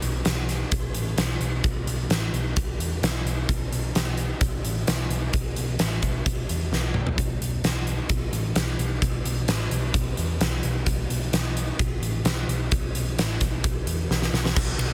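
Menacing and driving, this hard rock excerpt pairs a dark, round, amped short-scale hollow-body electric bass, picked low in its range, with a huge, up-front arena drum kit of punchy kick, fat snare, bright crash, ride and hi-hat cymbals, and toms in a pumping hall, with drum fills at 6.7 and 14.1 seconds, and the mix carries little reverb in a dense, heavily limited modern master.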